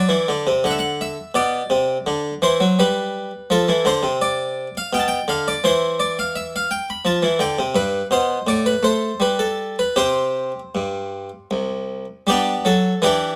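A rubato triple-metre lilt carries this flowing, serene fragment of a baroque-style suite movement for solo harpsichord, whose brilliant, airy Italian-style tone with doubled octave strings sits up front in a moderate studio reverb as it moves through shifting harmonies before settling onto a G chord at 12.3 seconds.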